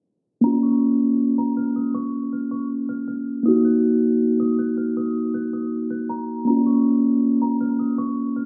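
A half-time hip hop groove carries this hard-hitting, brooding fragment of a longer piece, where a mellow, clean tine electric piano sits up front with minor-chord accompaniment while a faint, bell-like, slightly out-of-tune celesta traces a sweet, delicate melody high above through digital delay, all caught on a phone in a club-like room with compression, a low-pass filter and a filter sweep running from 0.4 to 8.5 seconds.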